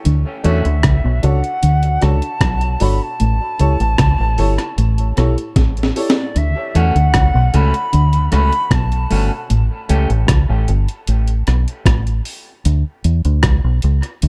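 A dark, warm mix with a spacious digital ambience frames this laid-back dub reggae excerpt, a cut from a longer piece at 76 BPM in 4/4 with a straight feel in D major. Up front, a gritty, compressed sampler-style breakbeat kit of thumpy kick, high-tuned snare, rim click and hi-hat sits beside a round, foam-muted fingered electric bass, and a drum fill closes the opening break at 6.4 seconds. A clean, mellow electric guitar riff stays in the background, while a woody, slightly detuned upright piano with long sustain drops dub-echoed stabs over the Dmaj7 and A7 changes. Floating above, a distant silver concert flute carries the expressive melody with pure tone, vibrato and a crisp attack, trailed by dub echo. A twangy, slightly broken-up electric guitar flickers briefly at the start and returns at 6.8 seconds with spring reverb and dub echo, as the harmony moves on through A to a rootless G6.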